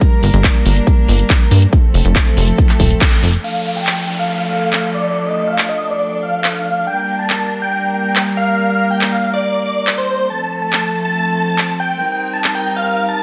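Uplifting trance in G minor at 140 BPM, driving and soaring, where a punchy up-front kick and plucky, funky analog bass lead off beneath metallic hats, claps and crash from a layered dance kit, gritty distant chamber strings sustain chords throughout, and at 3.4 seconds a huge, euphoric detuned supersaw lead takes over the melody with tape echo and a filter sweep, a soft downlifter trailing beneath it, with sidechain pumping on the strings, bass, lead and kit cymbals all in a light reverb.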